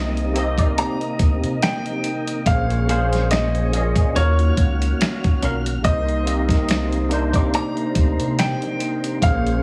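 A dark, round fingered electric bass sits up front in this introspective, soulful neo-soul excerpt at 71 BPM in C phrygian, with a gritty, tape-warm sampler-style kit of thumpy kick, snare, hi-hat and finger snaps joining at 0.2 s and a gentle 16th-note swing. A bright, barky tine electric piano with ensemble chorus carries the accompaniment through Cm7, Bbm9, Ebm9 and Cm9, while a smooth tonewheel organ with slow rotary speaker holds chords in the background and a clear, intimate grand piano, its action noise audible, plays the high melody. A clean, twangy electric guitar with spring reverb adds a second line from 0.6 to 7.7 s, all under light reverb and a heavily compressed, radio-like sound.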